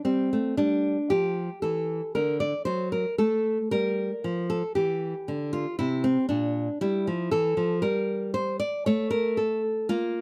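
Introspective and solemn, this brief fragment of a baroque-style classical dance unfolds at a slow 58 BPM in 3/4, with a rubato feel that lets the pulse breathe freely. A solo nylon-string guitar carries the whole passage, fingerpicked and placed up front, its warm acoustic tone ranging from Bb2 up to D5. The harmony moves from a rootless F through G5 and F#dim to a settled G minor, then darkens on an Em7b5 before the music falls away from chords at 8.9 seconds. Light reverb adds a gentle sense of space around the guitar, and the instrument is tuned slightly below standard pitch, at A4 = 439 Hz. Lifted from a longer piece, these ten seconds feel like a single reflective phrase of the dance.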